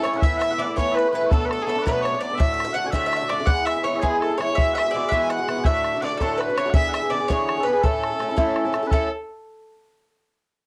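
Recorded at home onto cassette in a small room with a moderate, short reverb, this lively, bright excerpt of a Celtic folk jig moves at 110 beats per minute in 6/8 with a straight feel, in A major, tuned to A4 = 439 Hz. A clear, nasal fiddle carries the melody from the start, bowed by one player with an earthy tone that sits distant in the mix. Behind it, a bowl-back mandolin picked on double strings and a mellow, sweet small bagpipe with a continuous sound play second lines in the background. Up front, a picked swing-style acoustic guitar with a warm body supplies the accompaniment, and the fiddle, mandolin, bagpipes and guitar share a cassette-tape color. An open, boomy bodhran, close and dry, joins at 0.1 seconds. The harmony moves from Asus2 through Bm7, D, E, Eadd9, D and E7 before arriving on A.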